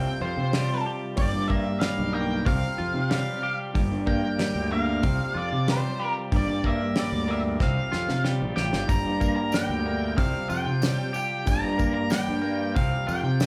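Dark and hypnotic, this 93 BPM psychedelic rock excerpt in G minor circles between Csus4 and Gm, with a bright, twangy twelve-string electric guitar riff shimmering through harmonic tremolo up front, an octave-fuzz lead guitar carrying a distorted melody, a round, overdriven fuzz bass underneath, reedy combo organ chords in spring reverb in the background, and a damped 70s drum kit with a fat snare and tight kick entering at 0.5 s and playing a fill from 7.6 s before a jingly tambourine joins at 8.9 s, all captured as a band playing live in one large studio room.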